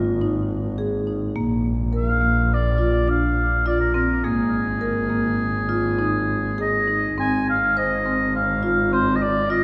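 A marimba struck with medium hard mallets lays out full, dry, close-miked arpeggios over a clear, focused bowed double bass singing with vibrato, setting a restless, hopeful chamber piece in an uneven 5/4. At 2.0 seconds a solo oboe enters with a warm, classical melody that sounds distant and roomy yet sits up front, and the music moves into a new section at 7.2 seconds. A wet church reverb surrounds this short fragment of a longer work.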